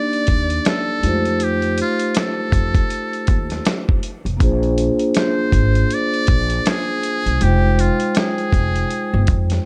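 A swung 80 BPM jazz-hop groove in 4/4 rides on a gritty, compressed sampler-style drum kit with a thumpy kick, under a growly pizzicato upright bass, mellow soft-mallet vibraphone accompaniment ringing up front, and a buzzy, metal-muted solo trumpet melody with light vibrato, all drifting smooth and relaxed through Ebmaj7, F9, Bb9 and Fm9 in a dark, lightly reverberant mix cut from a longer piece.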